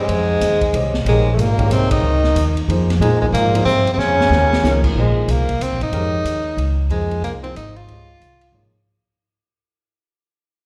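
Cool and spiritual, this swinging modal jazz passage moves at 185 BPM in 3/4, with a warm, subtoned tenor saxophone carrying the melody up front with vibrato over a woody pizzicato upright bass and a natural-sounding grand piano whose chords, shifting from Fm9 to Bbm9, carry a slapback echo. A bright trombone with scooped notes and light vibrato plays a second line in the background until 4.8 s, while a dark, smooth big-band drum kit with a punchy kick and rolled-off top swings through crash, hi-hat, ride and snare. The band hits an accent at 1.9 s, and the drums add a fill at 4.0 s. The whole performance sounds like a live gig heard through the venue's PA in a reverberant hall, and it fades out from 5.0 s as the cut ends.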